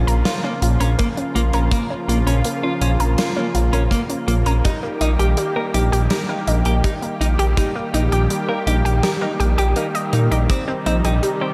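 Nocturnal and cinematic, this synthwave excerpt sets a lush, thick pad's sustained chords and a round, nasal analog pluck's arpeggios with cassette-tape coloring and slapback echo over a deep, rumbling detuned saw bass that pumps up front, while a clean, picked electric guitar riff enters at 0.3 seconds, a gated 80s kit adds hi-hat and snare, and a punchy kick drives from 1.0 seconds, all in a big arena sound with concert hall reverb as the harmony moves from Bbm through Eb/Bb to Cm.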